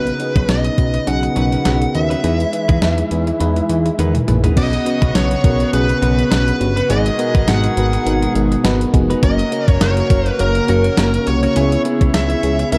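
1980s-style pop at 103 BPM in 4/4, with a light 16th-note swing and an uplifting, romantic mood, this short section is cut from a longer piece. A biting, overdriven lead guitar carries the melody through delay, while a warbling FM electric piano with a phaser and a faint noise layer plays the accompaniment, and a very quiet, direct-recorded clean guitar adds a picked, compressed riff. Underneath, a fat, detuned sawtooth bass with a filter sweep sits up front beside a clean 12-bit drum machine whose thumpy kick, medium-tuned snare, hi-hat, toms, tambourine and crash sound re-recorded in a small room. A brassy, evolving analog pad with chorus and vibrato holds sustained chords in the background, moving from Badd9 and Emaj7 to Bsus2, G#m7, F# and C#m7. After a drum fill from 4.0 to 4.6 seconds, a distant, roomy horn section enters at 4.6 seconds with octave-doubled stabs and delay. The production is dark and warm with light reverb.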